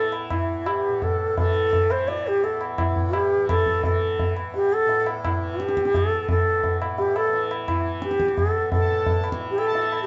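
A close-miked, airy bamboo bansuri carries a longing, meditative Hindustani melody with vibrato and tongued notes at 172 BPM in 7/4, gradually speeding up over a shimmering, buzzing tanpura drone and saturated, low-tuned tabla with a short ring, while a reedy pedal harmonium adds a breathing second line from 8.8 seconds, all heard as a live band in one room with wet studio reverb in a cut from a longer piece.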